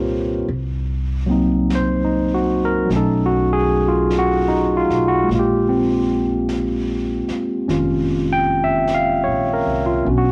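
This home cassette recording has a moderate studio reverb and captures a romantic, late-night jazz ballad at a slow 50 BPM with a lilting swing. Up front, a barky, lightly overdriven tine electric piano played through a combo amp carries the accompaniment with a tape-worn tint, moving through Cm7b5, B9 and Bbm9. Beneath it, a woody, thumpy pizzicato upright bass on gut strings supports the harmony, while a quiet brushed drum kit with a medium-tuned snare and hi-hat joins at 0.5 s in this fragment of a longer piece.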